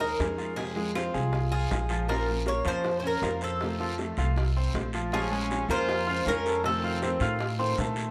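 Cuban son with a guajira lilt, this short fragment moves at a brisk straight four with a nostalgic, sultry air. A picked tres with metallic double strings carries the melody from the start, while a clear grand piano rolls arpeggios across a broad span and a woody, dark pizzicato upright bass sits up front. Tight, high-tuned vintage bongos ride in the background, joined just after the downbeat by a raspy, close guiro and a small fingerpicked nylon-string guitar whose finger squeak adds intimacy. At 5.1 seconds a clear trumpet with vibrato enters behind the band for a brief second line, and both it and the tres fall away at 7.4 seconds. A moderate plate reverb places the ensemble a little further back in the room, giving the whole a gently distant glow.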